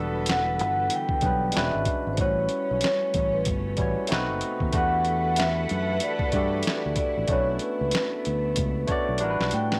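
R&B and neo-soul with a soulful, sultry mood, this excerpt moves at 94 BPM in 4/4 with a swung sixteenth-note feel in E dorian. A barky tine electric piano, bright and clean through a combo amp, sits up front with accompaniment chords from the start, while a bowed studio string section holds smooth, intimate sustained chords played sul tasto with vibrato. A fingered electric bass gives round, punchy low notes with transformer saturation adding a dark edge. At 0.3 s a vibraphone with soft mallets carries the mellow, ringing melody, its slow motor vibrato and slapback echo heard in a boxy small room, and a boom bap sampler-style drum kit enters at the same time with a gritty, pitched-down, compressed sound, thumpy kick, medium-tuned snare and hi-hat. The harmony moves through lush chords such as Em11, A13 and B7b9, and a drum fill at 9.2 s arrives together with a closing A13sus4, all set in light reverb and studio ambience.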